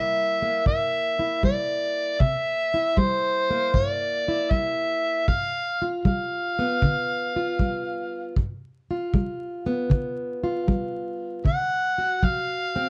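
A dark, crackling production with light reverb frames this short cut from a longer piece of acoustic country blues, rollicking yet laid-back at 78 BPM in 4/4 with a swung feel. Up front, an amplified, gritty harmonica carries the jazz-styled solo melody with light vibrato, tongue slaps and scooped notes, while a boxy, fingerpicked parlour guitar plugged in for accompaniment moves through C7, G7 and D. A tight, natural kick drum played with brushes in a small room joins at 0.7 seconds.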